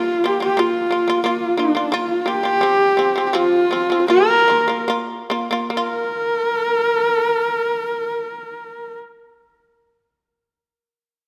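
Close, detailed microphones in a moderate concert hall reverb frame this vast, proud Mongolian folk passage in Bb gong mode at 69-92 BPM, which slows over its first 5.7 seconds, as a husky, boxy horsehead fiddle carries the melody up front with vibrato, portamento and slapback echo, a buzzing, percussive fretless shamisen plucks arpeggios, and a breathy, reedy bamboo xiao holds a second line in the background.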